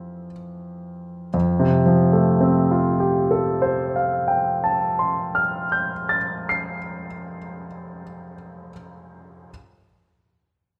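A clear, intimate grand piano sits up front with audible action noise, spanning F2 to C7 in a hazy, dreamy impressionist solo excerpt in F major at a rubato 30 BPM in 3/4, moving from Fmaj9 to Fadd9 at 1.3 seconds inside a moderate recital hall reverb.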